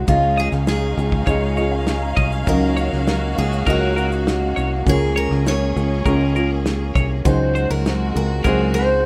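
Acoustic pop in Db major at 100 BPM, this heartfelt, sunny passage from a longer piece has a picked steel-string dreadnought carrying the melody with audible finger squeak, over a double-tracked, full-bodied nylon-string guitar, lush bowed strings with vibrato, and a fingered electric bass sitting up front with a direct, amped tone. A loose indie kit with punchy kick, shaker and snare rolls in at 0.1 s, and a twangy, compressed twelve-string electric adds arpeggios from 0.4 s. In the background, a worn, slightly detuned upright piano with woody action noise plays a fill from 1.3 s, all in a rough home demo mix with little reverb as the chords move from Dbadd9 over a Db bass.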